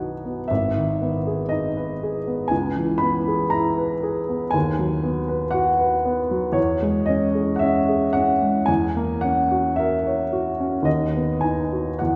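Dreamy and nostalgic, this short passage cut from a longer romantic nocturne unfolds slowly with a gently flexible, rubato pulse. A solo upright piano carries the whole of it, sounding warm, woody and intimate, with the soft clatter of its action audible beneath the notes. The piano sits up front, yet the listener seems placed further back in a concert hall whose lush reverb lets each chord bloom and linger. Its range reaches from the deep bass up into the upper treble, and the harmony drifts through a tender progression of minor and seventh chords before settling back toward home at 10.9 seconds. The result feels natural and unhurried, like a private reverie overheard from across a quiet room.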